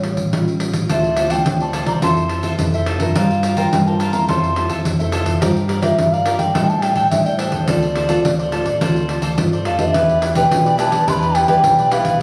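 Captured on a phone in the room, then given a moderate, large studio reverb and compression, this short cut from a longer samba and choro piece carries a bittersweet, nostalgic air in a straight four. An airy bamboo bansuri carries the melody, its hollow, mellow tone shaded with vibrato, a crisp attack and rolled-off highs. A full-bodied nylon-string guitar supplies fingerpicked accompaniment with a deep classical character, while an amped, fingered electric bass, coloured by an envelope filter, holds the low end. Up front, a jingly pandeiro played with hard hands sounds compressed and saturated, and a warm, picked acoustic cavaquinho joins at 0.9 s. The harmony opens on A7b13 and drifts through Dm9, Fmaj7 and Gm7 before a new section arrives at 9.9 s on Em7.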